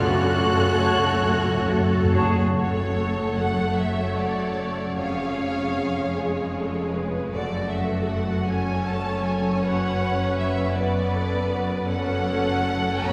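A slow, rubato 6/8 sway of about 46-55 BPM carries this yearning, elegiac classical passage in F# minor, cut from a longer piece and bathed in the long reverb of a church or concert hall. An intense, distant violin section sings the lush melody above a smooth-topped second violin line, focused violas, close cellos and rich, expressive double basses. A ringing, fingerpicked concert harp plays arpeggios, and timpani on medium mallets add a fill in the background through 2.6 s and keep playing until 8.5 s. In the opening seconds, a very quiet wind and brass colour appears: mellow clarinet, dark vintage French horns and a soft-attack trumpet, joined at 0.8 s by a roomy bassoon and at 0.9 s by a light-vibrato oboe and a pure flute group. After these fade, the strings and harp carry on to 13.1 s.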